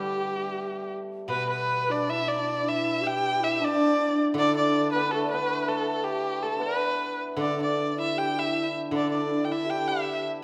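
An erhu carries the melody from the opening moment, its bowed line smooth and up front with vibrato and sliding portamento, while a shimmering hammered dulcimer and a soft, pure-toned low xiao in the background trace second lines beneath it. Below them, a steel-string zither played with fingerpicks adds silvery, ringing accompaniment in the low register. This pastoral, graceful Chinese chamber piece, cut from a longer work, moves at 79 BPM in a rubato 2/4 in the G gong mode, bathed in the reverb of a recital hall.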